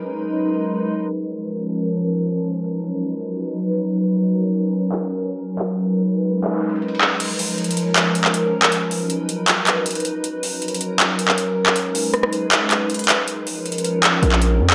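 Dark and menacing, this trap-style hip hop fragment in Bb phrygian runs at 158 BPM with a half-time feel, opening on a glassy, warbling FM pad that holds sustained chords alone with ensemble chorus and its own reverb. At 1.1 seconds an overdriven, up-front electronic drum kit enters with metallic hi-hats, handclaps, rim clicks and crash cymbal over a filter sweep, while the harmony cycles through Bbm, B, Gb and Abm. A saturated, heavy 808-style bass with a noise layer arrives only at 14.2 seconds, all set in a moderate digital plate ambience with a dulled top end.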